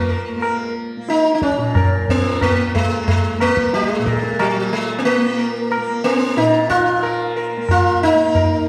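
This brief Hindustani classical excerpt puts the sitar up front, its bright, plectrum-plucked melody buzzing and shimmering with sympathetic strings as it moves between Gb3 and Bb4 in raga Bhairavi on Bb. Beneath it, a softly plucked tanpura sustains a warm drone from Bb2 to Bb3 throughout, adding its own buzzing glow at a much lower level. The tabla enters at 0.4 seconds, high-tuned and ringing, with a close, present sound. The music moves at 91 BPM in a straight 4/4, and its mood is longing and introspective. A wet recital-hall reverb, as in a church or concert hall, surrounds the performance, lending the brief passage a spacious, resonant air.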